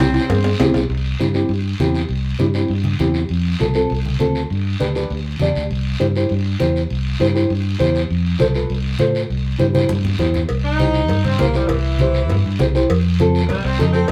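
Wet studio reverb wraps a band playing live together in one room in this sunny, danceable cumbia at 200 BPM in C major, cut from a longer piece. An up-front nylon-string guitar, dark and thumb-plucked, and a round, amped fingered electric bass provide the accompaniment and bass line over C, F and G chords, while bright, low-tuned congas sit in the background and a raspy, band-limited guiro sounds quietly throughout. After a drum fill at 9.8 s, ringing metal-shell cowbell and timbales return at 10.5 s, and a distant, tight saxophone section with light vibrato takes a jazz-style solo from 10.6 s to the end.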